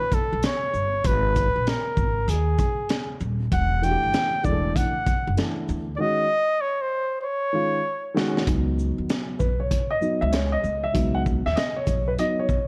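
A dry, dark mix with little reverb sets a cool, smoky mood in this short jazz-hop cut from a longer hip hop piece, with a lazy swing in the groove. A close-miked flugelhorn carries the melody from the start, its soft attack, scooped notes and light vibrato giving it a warm, intimate jazz voice. Beneath it, a gritty, saturated breakbeat kit with a punchy kick, high-tuned snare, hi-hat and shaker sits up front alongside a woody, thumpy pizzicato upright bass on gut strings. A mellow, vintage-sounding grand piano with deep lows and short sustain joins at 3.8 seconds, moving through lush extended chords such as Em11 and D#m11. The drums drop out briefly before a fill leads to a piano solo at 8.5 seconds over a C#9sus4 chord once the flugelhorn has finished.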